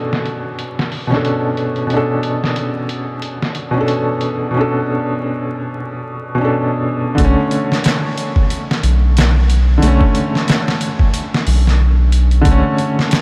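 A round, deep analog bass arrives at 7.2 seconds and becomes the heaviest presence, its dark, sustained tone thickened by tube saturation. Before it, a soft, felt-muted upright piano carries the accompaniment from the opening, intimate and mellow, with audible action noise, a tremolo shimmer, vintage sampler grit and tape echo. A sampler-style trip hop kit of hi-hat, thumpy kick and medium-tuned snare sits up front, sounding compressed, pitched down and gritty, as if re-recorded in a large room, with low-pass filtering on each drum and on the room sound. The swung sixteenth-note feel gives the piece a hypnotic, cinematic mood. A huge ambient reverb and vinyl crackle soak the mix in a dreamy haze, and the recording is cut from a longer piece.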